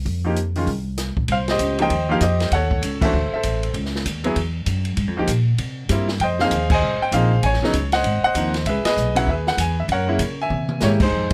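A dry, closely miked recording with little reverb gives this brief excerpt from a longer jazz piano trio a detailed, intimate sound and a moody, late-night air. At a brisk 195 BPM in 4/4 with a swung eighth-note feel, the upright bass opens first, its pizzicato steel strings sounding woody and up front as it ranges from Ab1 to Db3. The acoustic drum kit follows at 0.1 seconds with a natural small-room character, dark cymbals, a medium-tuned snare and a boomy kick, moving among crash, ride, hi-hat, rim click, toms and snare. The bright upright piano carries the melody from 0.2 seconds, brilliant and polished with long sustain, sitting present and forward between C3 and Ab5. The harmony travels through minor, half-diminished and dominant chords such as Cmadd11, Ebm7b5, Gb9 and C7b13, punctuated by band accents and a short drum fill at 10.5 seconds.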